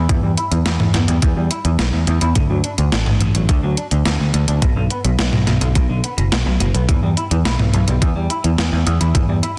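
Cinematic and moody, this short synthwave excerpt in E minor moves at a straight 106 BPM, with an up-front overdriven picked bass, dark and round, driving beneath a thumpy overdriven electronic kick and a clean yet overdriven 12-bit drum machine of hi-hat, medium-tuned snare and toms, while a slightly broken-up, compressed electric guitar riff sits further back, dressed in subtle chorus and digital delay and carried by a filter sweep across the full 9.6 seconds, over a dense, heavily limited master.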